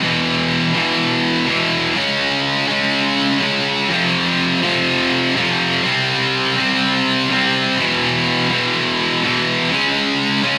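Angsty and brooding, this short rock excerpt cut from a longer piece moves at 124 BPM in a straight 4/4 feel. A lone electric guitar carries everything, its scooped, high-gain tone bright and heavily distorted, picked and double-tracked, and sitting up front. It plays alone from 0.0 to 10.6 seconds, spanning E2 to Db4 across a sequence of power chords: E5, Db5, F5, C5, then back to E5 and Db5, changing roughly every two seconds. A moderate stone-room reverb with a 1.2-second decay gives the sound a hard, enclosed echo. The recording has the rough, unpolished character of a rehearsal room.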